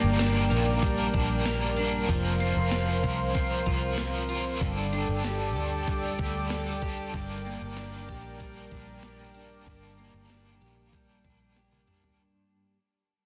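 Set in a straight 4/4 at 95 BPM, this dream pop excerpt drifts along in Eb lydian with a floating, ethereal mood, fading out across its full 12.2 seconds. A crisp 8-bit digital drum machine with a thumpy kick and medium-tuned snare enters at 0.2 seconds, its sampler-style kit of hi-hat, snare, tambourine and toms carrying a small-room character and closing with a drum fill at 11.6 seconds. Underneath, a vintage muted fingered electric bass gives a dark, round, foam-muted low end, while a clean electric guitar plays compressed, picked arpeggios through subtle chorus and delay. A bright overdriven electric guitar adds accompaniment coloured by tremolo and a touch of chorus, and a detuned sawtooth analog pad holds smooth, slow-attack chords high above with its own chorus. The harmony moves from Ebmaj7/G through Fsus4 and Gsus2 before returning to Ebmaj7/G, all set in light reverb within a dense, heavily limited modern master.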